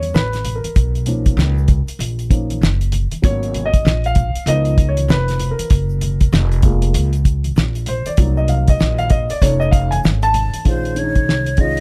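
A cool, nocturnal jazz-hop excerpt at 97 BPM in Bb minor opens with a dark, mellow concert grand piano soloing over chords from A9 through Gbmaj7 to F7alt, backed by a woody, thumpy pizzicato upright bass, a dry, cloth-damped drum kit with a fat snare and tight kick up front, and very quiet, bright congas and tube shaker, before a breathy, hollow jazz flute with vibrato enters at 10.7 seconds on a Bbm9 chord in a nearly reverb-free mix.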